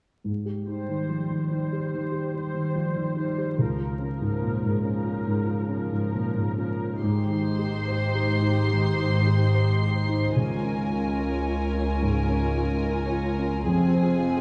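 A moderate scoring-stage reverb and a touch of vinyl crackle frame this short cut from a longer piece, a moving, hopeful cinematic orchestral cue in Ab major at a rubato 72 BPM, where an up-front, mellow grand piano with deep bass opens at 0.2 seconds over Abmaj7 and Db6 harmonies, joined at 0.7 seconds by a woody, lush viola section bowing sul tasto with vibrato. At 7.0 seconds the texture blooms as an intimate chamber violin section adds a second line with light vibrato, a very quiet, bright concert harp rings out fingerpicked arpeggios, and a pure, floating cello section and a close double bass section settle into the background as the bass, with the harmony turning to Fm at 13.7 seconds.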